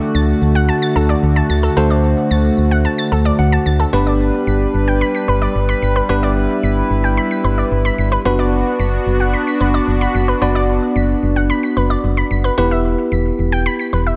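A punchy FM bass sits up front, its dark, digital notes striking with a fast attack and decaying, as it anchors this upbeat yet wistful synth-pop excerpt in G major at 111 BPM in a straight 4/4. A bright, clean tine electric piano, heard through built-in speakers, plays the accompaniment and adds a short fill from 3.1 to 3.9 seconds. Higher up, an analog pluck runs arpeggios in a detuned sawtooth and square-wave blend with a noise layer, a filter sweep and a moving notch, thickened by chorus and tape echo. A smooth, soft-attack sawtooth pad holds sustained chords with its own chorus until it stops at 12.5 seconds. The harmony moves from D to G and Bm/F#, then arrives on Em at 12.6 seconds, in a light reverb.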